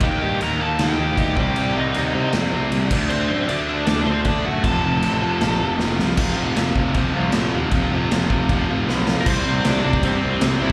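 A gritty, up-front garage drum kit with a punchy kick and crashing cymbals in a pumping stone room drives this urgent, raw punk rock excerpt at 156 BPM, holding a half-time feel until 6.2 seconds. Beneath it sits a growly fuzz picked bass, joined by a biting overdriven guitar and a scooped distorted guitar riffing in the background, while a nasal parked-wah lead guitar carries the melody with slapback echo and digital delay, dropping out at 5.8 seconds and returning at 9.2, the whole captured at a live club gig through the venue's PA with little reverb.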